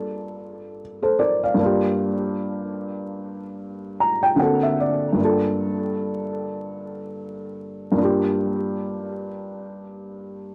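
A dark, boxy felt-muted upright piano sits up front and plays alone throughout this hazy, melancholic hip hop fragment, its audible action noise and tape echo wrapped in a small room and vinyl crackle as it moves from Gm7 to D7b13 at 4.4 seconds and back at 5.2 seconds over a swung 4/4 feel.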